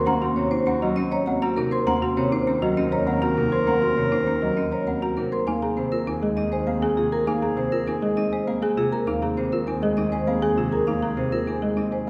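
A resonant recital-hall reverb fills this short excerpt, giving the ensemble the spacious glow of a church or concert hall. It is a hypnotic yet urgent piece of minimalist classical pattern music in triple metre, cut from a longer work. A dark, metallic vibraphone with a fast motor vibrato carries the melody, while a warm, classical-style clarinet traces a second line beneath it. A mellow, thumb-plucked Celtic harp provides ringing accompaniment, and a woody, rustic folk marimba and a sweet, bell-like celesta play arpeggios, both close-miked and dry. Underneath, a single bowed double bass holds a low Eb with expressive vibrato and portamento, as the harmony moves from Ebm7 to Abadd9/Eb at 5.5 seconds.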